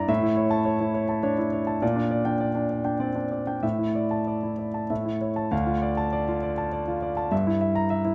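Captured with close, detailed microphones in a moderate scoring-stage reverb, this stormy, agitated cut from a longer classical virtuoso piano study in D minor features a solo grand piano, clear, intimate and up front with audible action noise, playing in a rubato 3/4 at 92-106 BPM across a range from D2 to Bb5, tuned to A4 = 438 Hz, moving from A through Gm/Bb and Asus4 before settling on Dm at 5.5 seconds and ending on Edim/G.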